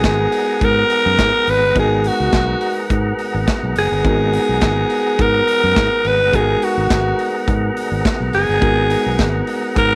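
Danceable and driving, this disco excerpt in G# minor moves at 105 BPM in a straight 4/4, resting on a single G#m9 chord across its 9.9 seconds, tuned to A4 = 443 Hz. A raspy, growling alto saxophone carries the jazz-style solo melody up front, with subtone and scooped notes. Beneath it, a clean tine electric piano plays through its built-in speakers, a fat, lightly overdriven tonewheel organ holds sustained chords with key click and a fast rotary speaker, and a fingered electric bass sounds direct and amped, while an acoustic studio drum kit with a punchy kick, a medium-tuned snare and hi-hat sits in a pumping room under a light studio reverb.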